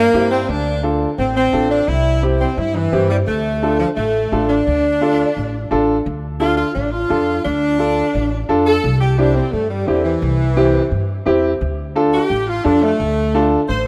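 A straight 4/4 cumbia pulse at 173 BPM drives this danceable Latin excerpt in D minor, where a woody pizzicato upright bass and a clear, long-sustaining upright piano support a warm, close-miked saxophone section that carries the melody with jazz-style vibrato and takes a solo from 6.1 seconds, the whole excerpt framed by a moderate plate reverb in a rough home demo mix.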